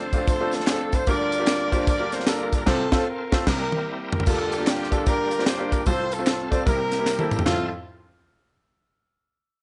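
Jubilant and hopeful, this uptempo gospel excerpt swings at 150 BPM in F major, with a punchy horn section carrying the melody up front over a clear, woody upright piano, a bright, shouting tonewheel organ holding sustained chords in the background through a slow rotary speaker and chorus vibrato, a dry funk drum kit with a high-tuned snare and tight kick, and background tambourine, egg shaker and group handclaps, as the band hits an accent from 2.7 to 4.3 seconds with a drum fill at 3.5 seconds before the chords settle on Fmaj7 at 7.5 seconds.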